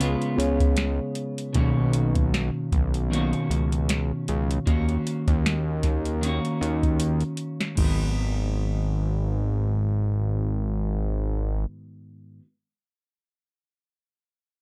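A fat, detuned sawtooth bass sits up front in this mellow, hazy indie-pop fragment with lightly swung sixteenths, alongside a dark, clean electric guitar with lush chorus and a warbly pitch drift, a reedy, slightly out-of-tune electric piano that drops out at 1.6 seconds, and a soft vintage rhythm box with deep kick, crisp snare and metallic hats that plays a fill at 7.0 seconds before stopping at 8.0 seconds, all with little reverb.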